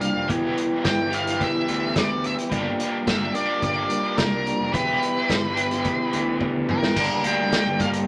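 Mysterious and hypnotic, this short psychedelic rock excerpt at 108 BPM in 4/4, tuned slightly sharp to A4 = 445 Hz, sets a dark, fuzz-soaked octave-fuzz lead melody over a bright, double-tracked overdriven guitar riff with harmonic tremolo, mellow combo organ chords with light vibrato sitting in the background, a round, punchy fuzz bass, and a pumping vintage drum kit with dark cymbals whose fill at 6.4 seconds ushers the shift from Em and Gm7 to Gm at 7.0 seconds, all in a wet studio ambience.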